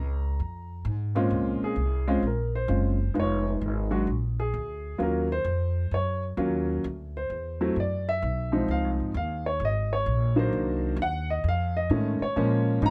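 Close, detailed microphones and a light reverb give this cool, late-night jazz piano trio recording an intimate, present sound. Set in Bb minor at 130 BPM in 4/4 with a swung eighth-note feel, this short excerpt from a longer piece moves through rich harmony, from Bbm7 and Bbm9 through Fm7b5, Ebm9, D9 and Dbmaj9 before an F7alt turns back to Bbm7. The grand piano carries the melody with a smooth, vintage warmth, sitting up front and ranging from Bb2 to Bb5. From 1.3 seconds it takes a solo that runs to the close at 12.9 seconds. Underneath, the upright bass is plucked on steel strings, with a woody, growly acoustic tone, also placed up front and spanning F1 to Bb2.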